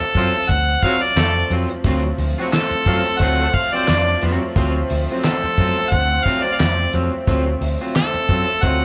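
A mellow, punchy harmonica with light vibrato carries the melody up front in this energetic funk excerpt at 88 BPM, riding a swung sixteenth-note groove over a single D7#9 chord. Beneath it, a damped 70s drum kit with a fat snare, tight kick, hi-hat and handclaps sits beside a round, foam-muted fingered electric bass, while a twangy electric guitar at the edge of break-up enters at 0.2 s to accompany. In the background, a reedy, bowed string section holds sustained chords throughout, and a clear, roomy horn section adds a second line from 0.2 to 4.2 s, the whole band sounding live in one large studio room with moderate reverb.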